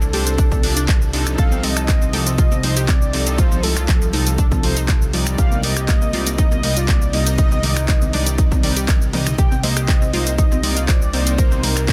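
Progressive house with an expansive, driving mood, this excerpt is anchored by a punchy, up-front electronic kick from 0.4 s and a fat, detuned sawtooth bass with a filter sweep, while a tape-tinged house kit of finger snaps, handclaps, hi-hat, shaker and toms adds a drum fill at 9.1 s and soft-handed congas sit in the background. Mellow, evolving supersaw stabs and a round, bright analog pluck playing chorused arpeggios carry digital delay over a shift from Dm7/C to Ebmaj7/C. Above them a thick, dark unison lead with vibrato and a moving notch sings the melody. Sidechain pumping breathes through every part except the kick, and a dense, heavily limited modern master and digital ambience frame the mix.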